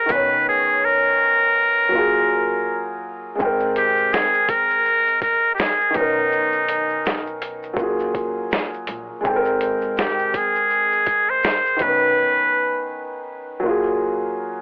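Cosy and nostalgic, this lo-fi hip hop excerpt has a swung groove and lush major-ninth chords, with a breathy, buzzy metal-muted trumpet singing the jazz-style melody over a soft, felt-muted upright piano with a vintage, intimate tone. Sampler-style boom bap drums, gritty and pitched down with a thumpy kick, high-tuned snare, hi-hat and shaker, drop out from 0.5 to 3.4 seconds. A woody, dark pizzicato upright bass sits in the background, and the trumpet and piano carry a cassette-tape, telephone-like haze in a lightly reverberant home setting before the piano plays alone from 12.9 seconds.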